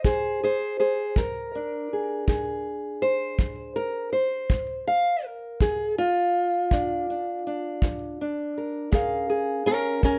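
Rollicking yet soulful, this short cut from a longer acoustic country blues piece moves along in a straight 12/8 feel. A fingerpicked old ladder-braced guitar carries the melody throughout, sitting up front with a woody, boxy tone and the dark character of old strings, ranging from Bb2 up to F5. Beside it, a kick drum played with brushes keeps time for the full 10.2 seconds, its tight, smooth thump captured in a small room and placed just as close. The harmony rests on Bb7 before shifting to Bbm7 at 8.9 seconds. Light reverb gives the pair a touch of space while keeping the character of a solo or duo performance.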